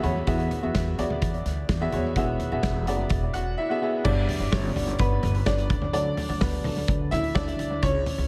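Piano-driven pop with an anthemic, warm mood, this short excerpt cut from a longer piece opens on a fill from a clear, woody upright piano touched with analog delay, then gives the piano a solo from 4.1 seconds over chords moving from Eadd9 to G and D. A pizzicato upright bass with a bright steel-string bite holds the low end, while a loose indie drum kit with dark cymbals, a punchy kick and a rolled-off top sits up front, its sound also carrying analog delay. Light studio reverb gives the whole mix an echo-heavy feel.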